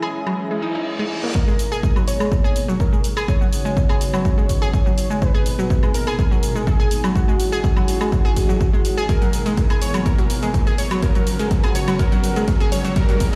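Driving and dreamy, this progressive house excerpt moves at 124 BPM in G# minor, opening on a very quiet, twinkling granular shimmer, a filter-swept analog pluck playing round, warbling arpeggios, a catchy, detuned unison lead with dub echo and a lush, airy pad, all three pumping against the sidechain, over tape-toned woodblock, shaker and hi-hat. A punchy, up-front electronic kick arrives at 1.4 seconds, while a faint reverse cymbal and riser feed a long build-up with filter sweeps on the pad and lead and a drum fill from 9.1 seconds. Chords cycle through C#madd9, G#madd9 and Badd9, and the mix sounds as if played on a big system in a bare stone room.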